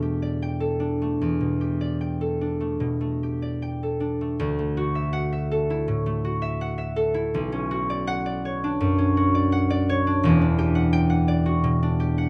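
A concert harp opens alone on an Em11 chord, its fingerpicked strings ringing out in this peaceful, serene classical solo piece. The tempo moves freely between 74 and 86 BPM in 4/4, with a relaxed rubato feel centered on D major. The harmony drifts from Em11 to Dadd9 at 4.4 seconds, where a new section begins, then passes through Bmadd9 before settling on Em9 at 10.2 seconds. The harp spans a broad range from a deep E1 up to G5, and its acoustic tone is warm and placed up front. A light reverb gives the ringing notes a gentle halo across this short passage, which is cut from a longer piece.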